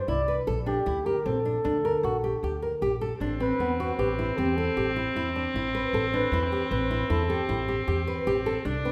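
A breathy, dark flugelhorn carries the solo melody with light vibrato and scooped, jazz-style notes in this hopeful, shimmering excerpt of contemporary chamber music in 7/4 at 154 BPM. Up front, a full-bodied nylon-string guitar fingerpicks classical arpeggios over a woody, growly pizzicato upright bass, as the harmony moves from Gmadd9/Bb to Am9 at 3.2 seconds, where a single bowed viola with a reedy gut-string tone and smooth top enters on a second line. A moderate recital hall reverb gives the ensemble a natural sense of space.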